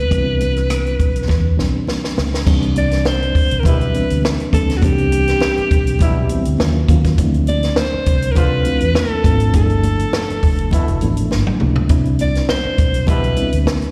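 Heard as a live gig through the venue's PA with recital-hall reverb, this bittersweet, cinematic fragment of lush 1970s-style soul swings gently as a breathy, whispered alto saxophone carries the melody with vibrato and slapback echo over a mellow, reedy electric piano pulsing with fast tremolo, a dark, foam-muted fingered electric bass, a dry, punchy cocktail drum kit with dark cymbals and two fills, and very quiet, damped congas, while a smooth, tight trombone section adds jazz-style stabs from 3.6 s.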